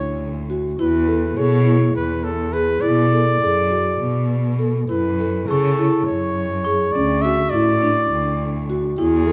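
Moving in a straight 7/8 at 206 BPM in eighths, this pensive, urgent passage of contemporary chamber music sets a warm, close-miked flugelhorn melody with scooped, jazz-style notes up front over woody, round marimba arpeggios and a dark, bowed cello bass line rich in vibrato and portamento, while a bell-like glockenspiel struck with rubber mallets rings softly in the background from 5.5 to 7.2 seconds, the harmony moving through Dmaj7, E, Bm7 and F#m9 inside a wet recital hall reverb.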